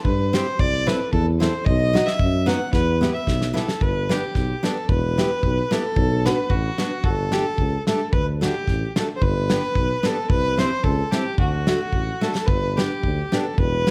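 A moderate recital-hall reverb gives this festive, bouncy alpine folk dance-band piece a spacious, resonant setting, and it plays as a fragment cut from a longer work in a lively duple metre with a straight feel. A rich, smooth fiddle carries the melody with light vibrato, bowed by a single player and sitting up front. A mellow tuba with a smooth top supplies the bass line in a classical style. A full-bodied picked steel-string acoustic guitar joins at 0.3 s to add accompaniment. A loose acoustic drum kit with a punchy kick and medium-tuned snare keeps the dance moving from a small-room sound, with a fill from 2.7 to 3.8 s leading into the second section and another at 12.2 s.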